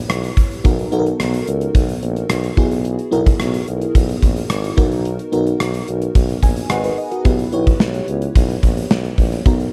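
An up-front gated 80s drum kit with a bright, airy room sound, tight kick and medium-tuned snare drives this uplifting, nostalgic 1980s-style pop excerpt at 109 BPM in straight 4/4, alongside a warm tuba bass with light vibrato and a lush, dreamy FM electric piano with a soft pad layer, chorus and tremolo that moves through chords such as Em/B, Bmaj7 and Eadd9/B and adds a fill from 6.2 to 7.3 seconds, all in a dry mix.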